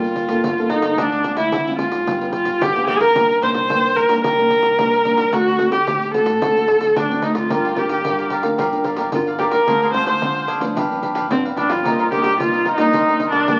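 A straight 4/4 pulse at 110 BPM drives this nostalgic, lively samba and choro passage in G minor, cut from a longer piece, with a jingly pandeiro sitting close and dry. Up front, a single bowed viola carries the melody with a rich, smooth, even tone and vibrato, though it also sounds distant. Beneath it, a small-sounding nylon-string guitar is thumb-plucked as accompaniment, and a woody pizzicato upright bass with steel strings stays in the background. At 7.5 s a crisp, picked cavaquinho joins the accompaniment. The harmony moves through Gm9, Dm7b5, G7b9, Cm9 and D7 before circling back, all bathed in a wet large-studio reverb and the crackle of a very old 78 rpm record.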